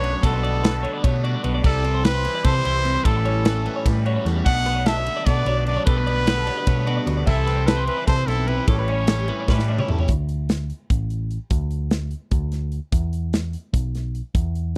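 Moving along in a straight seven-eight, this bright, wistful math rock and midwest emo excerpt puts a brilliant, up-front trumpet on the melody, with light vibrato, scooped notes and a slapback echo, over bright twelve-string arpeggios, a twangy clean guitar and a double-tracked overdriven guitar riff with phaser tucked in the background. A round, dark hollow-body bass and a polished acoustic kit with a tight kick sit up front, and after a drum fill at 9.5 seconds the guitars drop out at 10.1 seconds, leaving bass and drums alone until 14.8 seconds. The recording has a dry, close 1970s-style studio sound.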